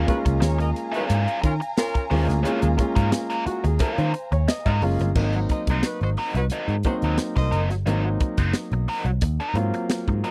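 Funk at 89 BPM in Ab mixolydian, energetic and dry with a close 1970s studio sound, built on a round, foam-muted picked electric bass and a crisp fusion kit with a high-tuned snare, tight kick and dark cymbals, while a crunchy overdriven guitar works a wah, a woody upright piano punches out stabs and a fill from 3.1 to 5.2 seconds, a tight horn section with vibrato plays a second line until 7.6 seconds, and a lush bowed string section holds sustained chords in the background until 5.1 seconds as the harmony shifts from Eb9sus4 to Ab9 at 5.2 seconds.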